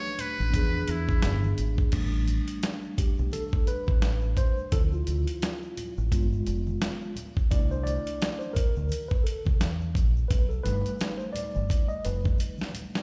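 Jazz-hop at 86 BPM with a swung sixteenth feel, this smoky, nocturnal excerpt opens on a brief, buzzy metal-muted trumpet solo, close-miked and thin with vibrato and scooped notes, that lasts only until 1.6 seconds. A mellow tine electric piano, clean through its built-in speakers, carries the harmony from the start and takes over as the solo voice from 1.9 seconds, moving through jazz chords such as Am11, G7b9 and C69. The dusty, sampler-style drum kit sits up front with a gritty, compressed character, a thumpy kick and a medium-tuned snare, plus hi-hat and crash, closing with a fill at 12.4 seconds. A deep, round dub bass, fingered and punchy, anchors the low end alongside the drums. Tube shaker and congas add soft acoustic texture in the background, while a stone room reverb gives the mix the feel of a big sound system playing in a bare space.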